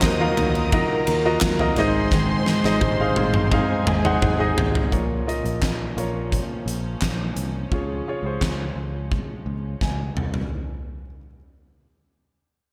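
An anthemic, uplifting piano-driven pop fragment in Db major at 86 BPM opens with everything together: a huge arena drum kit with a fat snare, punchy kick and handclaps, an up-front baby grand piano, growly picked electric bass, a fingerpicked jumbo steel-string acoustic guitar riff, a dark, woody violin section with slapback echo, and a very quiet, reedy string section holding sustained chords in a lush hall; the guitar and violins fall away at 4.9 s, and drum fills arrive at 2.1 s and 9.8 s.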